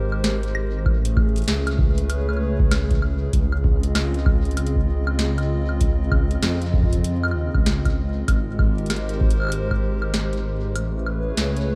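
A hollow, flute-like pad with chorus and sidechain pumping opens alongside a rumbling, detuned saw bass that sits up front, setting a wistful, intricate IDM mood at 97 BPM with a swung 16th-note feel in Db lydian, moving through lush major-ninth chords. A booming analog drum machine with crisp snare, metallic hi-hats, woodblock and delay arrives at 0.1 seconds, and a deep electronic kick joins at 0.9 seconds before dropping out at 9.8 seconds. The drums carry the character of a large room, while the overall mix is dry and rough like a home demo, in this fragment cut from a longer piece.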